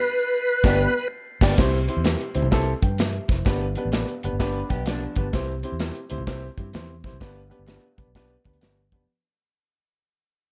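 Uplifting and warm, this cut from a longer uptempo 1960s-style soul tune swings at 128 BPM in C major, opening on a band accent where a reedy, up-front tonewheel organ with key click and a slow rotary speaker states a brief melody before dropping out at 1.1 seconds. A woody upright piano, a dark, round, foam-muted electric bass and a punchy acoustic drum kit with crash, hi-hat, kick and snare carry the groove. A lo-fi, slightly broken-up guitar riff sits in the background in two short bursts, and very quiet, damped congas join at 1.6 seconds as the band moves between G and C under light reverb and begins fading out.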